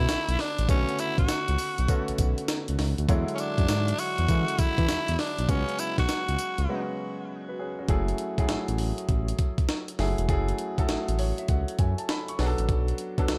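A breathy tenor saxophone leads this bouncy, slick new jack swing excerpt, sitting up front with a raspy, edgy, punchy pop-style tone, vibrato and a touch of digital delay as it carries the solo melody until 6.8 seconds. Beneath it, a grand piano provides polished, present accompaniment, while a smooth synth bass blends sawtooth and triangle into a mellow, sustained low end with a fast attack. The breakbeat sampler-style drum kit is compressed and pitched up, pairing a thumpy kick and high-tuned snare with hi-hat and tambourine for a gritty, forward sound. Set at 100 BPM in 4/4 with a swung sixteenth-note feel in F# minor, the harmony moves through Bm9, E13 and C#7sus4 before a short break gives way to the second section at 7.9 seconds on F#m9. The piano steps out with a fill at 10.9 seconds, and the chords shift to Bm7 at 12.4 seconds near its end, all in a dry mix with little reverb.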